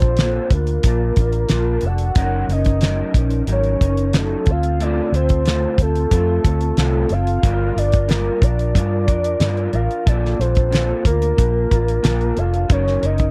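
From the first moment, a damped 1970s drum kit, a muted bass, a guitar and a soft synth lead all play together in this nostalgic, dreamy bedroom-pop fragment cut from a longer piece. The drums sit up front with a fat snare, tight kick and hi-hat, dry and mid-forward, while the fingered electric bass is dark, round and punchy, its foam-muted tone anchoring the low end. An electric guitar through a small old amp supplies the accompaniment, fingered and slightly broken-up, with an ensemble chorus and a warbly pitch drift that give it a hazy, worn character. Above it floats an octave-layered synth melody, full and sustained with a fast attack, blending triangle, sawtooth and sine tones over a sub octave, colored by tremolo, vibrato and a subtle chorus. The harmony drifts through Bbmaj7, Gb6, Dm7 and Gm7 before returning to Bbmaj7 and Gb6, and the whole recording has the close, dry feel of a 1970s studio with little reverb.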